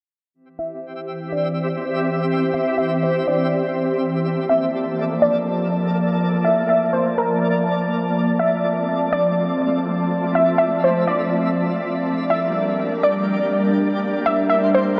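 A filter sweep opens this floating, dreamy hip hop fragment, followed almost at once by a warbly, dusty pluck carrying the melody from 0.6 seconds, its dark, lo-fi tone shaded by chorus, delay and a sub octave. An ethereal, airy pad enters at 0.7 seconds, holding sustained chords up front with a slow attack, long release and a detuned, ensemble-chorused body. Just behind it, a twinkling granular texture arrives at 0.9 seconds, adding sparkling, octave-up shimmer at a lower level. Over a half-time feel, the harmony moves from C through Bbmaj7 and F6 to Gm. A huge ambient reverb and the worn, warbling drift of old cassette tape give the whole piece a hazy, nostalgic glow.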